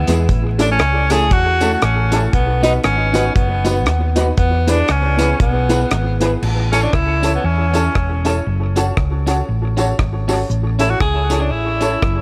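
A breathy, whispered tenor saxophone with scooped notes and tape echo carries the melody over a round, up-front hollow-body electric bass in this cheerful, swung ska cut, joined by a slightly broken-up electric guitar in the background, woody, slightly detuned upright piano stabs and a dark, dry reggae drum kit (both with tape echo), and a jingly tambourine, all moving from A through B to E and then F#m under light reverb and vinyl crackle.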